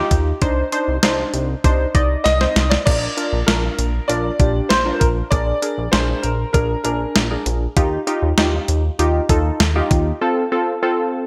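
A thumpy, up-front 12-bit drum machine with gated reverb drives this bright, wistful synth-pop passage in Bb major at 98 BPM, alongside a glossy, dark chorused synth bass built from pulse and sawtooth tones and round, chorused analog keys. A clear baby grand piano carries the melody from 2.2 to 7.4 seconds through analog chorus and digital delay, while the chords move from Cmadd9 through Bb and Bb7 to Ebadd9. At 10.2 seconds the music breaks on F, with the keys playing alone in a bright 1980s-style digital mix bathed in plate reverb.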